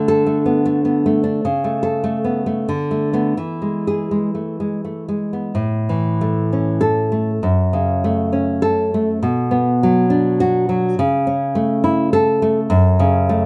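Set in light reverb, this short romantic passage for solo classical guitar places a full-bodied, deep nylon-string guitar up front, fingerpicked in a sunny, nostalgic rubato waltz time with an audible finger squeak, moving into a new section at 5.6 seconds before the cut at 13.5 seconds.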